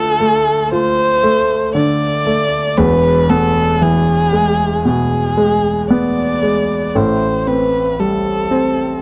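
Emotional and melancholic, this slow pop piece in A minor moves at 58 BPM in a straight 4/4, its grand piano accompaniment spanning deep bass to the middle register beneath a single bowed violin melody. The violin is dark and nasal, expressive with vibrato and portamento, and carries a slapback echo, while the piano sits present and up front with a short sustain. The dry, close sound recalls a 1970s studio as the harmony passes from Dm to E at 2.8 seconds and settles on Am7 at 7.0 seconds.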